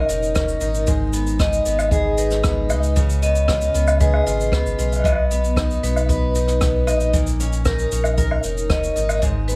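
Heard through vinyl crackle, light reverb and a small room's ambience, this hopeful, delicate folktronica excerpt at 115 BPM sets a bright, ringing vibraphone with medium hard mallets, fast motor vibrato, tape echo and vintage 12-bit sampler grit as the second line over a shimmering, octave-doubled picked twelve-string acoustic guitar playing arpeggios with tape echo, a round sine sub bass up front, a natural brushed shaker, rim click and woodblock, and a boomy kick in the background, moving from C#69/E# through G#m, C#7 and B back to C#69.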